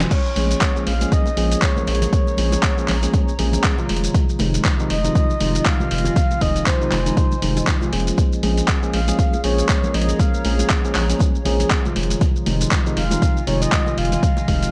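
Deep house at 119 BPM in Bb minor, this hypnotic, moody excerpt rides a swung 4/4 groove over a slow alternation of Bbm7 and Fm7. An overdriven electronic kick sits up front, joined by a gritty, sampler-style soul kit with a fat snare, handclaps, hi-hat, shaker and crash, and by bright, very quiet congas entering at 0.4 seconds. A round, dark analog bass holds the low end between F1 and Bb1, pumping against the kick, while a mellow tine electric piano plays clean stabs colored by tape echo and the same sidechain pulse. A breathy, flute-like synth lead carries the melody in a narrow range from C5 to F5, softened by subtle chorus, vibrato and analog delay. Behind it all, a warbling, nostalgic lo-fi pad drifts in the background with chorus, phaser and reverb, wrapped in a digital ambience that keeps the top end dusky.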